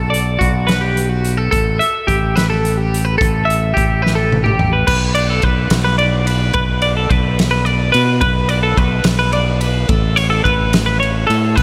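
A dreamy, reverb-soaked hall sound frames this short, intricate and playful math rock and midwest emo fragment in 6/8 at 72 BPM, where a bright, twangy twelve-string electric guitar with tremolo spins clean picked arpeggios up front over a growling, overdriven fingered bass, while a loose indie drum kit with dark cymbals, a fat snare and a punchy kick in a pumping room plays a fill from 4.0 to 4.9 seconds, as the harmony moves from Bm7 and Asus2 into Bm and finally Aadd9.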